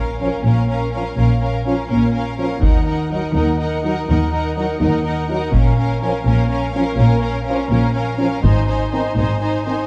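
Heavy-sticked taiko drums, played with a small-room acoustic character, enter at 2.6 s and become the most forceful element in this brief, heroic passage of epic orchestral film scoring in 6/8. Beneath them, a lush string body of bowed sections plays together from the start: a smooth, even violin melody sits high over a richer, focused second violin line, while violas fill the middle with a soft-topped accompaniment. Cellos and double basses anchor the low end with expressive vibrato and soft attacks, the cellos heard especially close. A mellow French horn section joins at 0.2 s with sustained chords in a classical style, thickening the harmony as the music builds through Bb minor, Eb minor, back to Bb minor, and then to Ab. The production is dark and warm, set in a moderate scoring-stage reverb that gives the build-up a grand, cinematic sweep.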